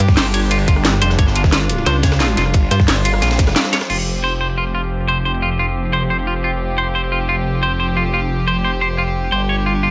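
Aggressive and tense, this dark technical drum and bass excerpt at 177 BPM opens with a heavy pulsing pluck wobble bass, a tight up-front electronic kick, a drum and bass kit with cracking snare and metallic hats, and a very quiet gritty breakbeat kit, with a band accent at 3.6 seconds before the drum parts fall away by 4.0 seconds, leaving a swirling phased detuned saw bass, a bright twangy clean electric guitar playing delayed arpeggios, and a reedy chamber string section holding sidechain-pumped chords under a filter sweep from 3.9 seconds.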